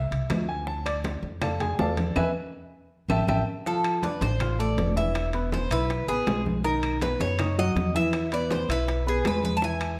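Latin Cuban son in a sultry guajira mood, where a clear, present grand piano opens with long-sustained solo arpeggios over a thumpy, gut-strung upright bass plucked up front, ringing low-tuned congas, round bongos, metal-shell timbales and vintage woody claves, before a band accent and drum fill lead at 3.7 seconds into a bright, metallic Cuban tres melody with double strings, all set in a large studio reverb.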